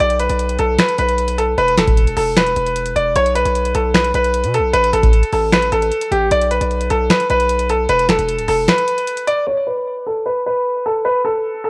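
Melancholic and eerie, this short excerpt cut from a longer trap hip hop piece moves at 152 BPM in 4/4 with a half-time feel. A bright concert grand piano carries the melody between G4 and D5, sitting up front with a brilliant, natural tone that is softened by a low-pass filter, cassette tape coloring and tape echo. Beneath it, a distorted 808-style bass growls from D1 to B2, heavy and aggressive with a saturated noise layer, a fast attack and a decaying tail, and it drops out at 8.7 seconds. A booming analog drum machine supplies a deep kick, tonal snare, metallic hi-hats and finger snaps, all with a tape-warmed character, and the kick is muted from 8.7 to 9.5 seconds before the drums stop. From 9.5 seconds a filter sweep on the piano carries it alone to the end at 11.7 seconds, with little reverb and the close feel of a home cassette recording throughout.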